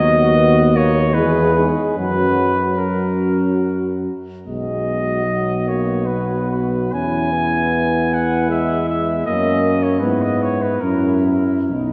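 A clear flugelhorn carries the tender, lyrical melody up front in this hymn-like classical excerpt for brass band, moving in a rubato 3/4 between 66 and 79 BPM in B major. Beneath it, a mellow French horn section sings a second line with light vibrato and soft attacks, a dark euphonium and a warm euphonium fill out the background accompaniment, and a prominent tuba anchors the bass. The whole ensemble sits in a lush church reverb with a softened top end, and the harmony drifts through E and F# before pausing on an unresolved F#7 as the clip ends at 11.9 seconds.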